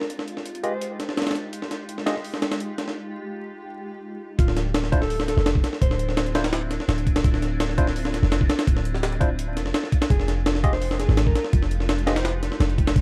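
Frenetic and raw, this drum and bass excerpt at 168 BPM runs a gritty, pitched-up breakbeat kit with a thumpy kick and high-tuned snare up front under a bright, blurred granular pad on Fm9. A barky, lightly overdriven tine electric piano with 12-bit grit and dub echo stabs in at 0.6 seconds, and a dark, vibrato-laden alto saxophone drifts in the background through dub echo from the opening. After a break from 3.0 seconds, the drop at 4.4 seconds brings a deep, boomy tube-saturated 808 bass and a shift to Dm9, all over a dry sound dusted with vinyl crackle.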